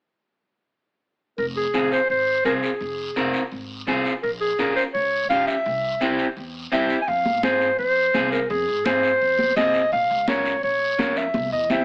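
Fiery and danceable, this cumbia fragment is cut from a longer piece and carries a straight four-beat feel through an AM radio sound. A classical-style clarinet takes the solo melody up front, joined from the start by a woody, growly pizzicato upright bass sitting low in the mix and a raspy, close guiro. At 1.7 seconds a dark, slightly broken-up electric guitar adds fingered accompaniment, also placed up front. The harmony moves from F minor through B-flat minor to C before returning, and at 7.1 seconds the second section opens with bright, high-tuned congas heard in a live room. A drum fill closes the passage at 11.3 seconds, and a moderate large-studio reverb surrounds the ensemble.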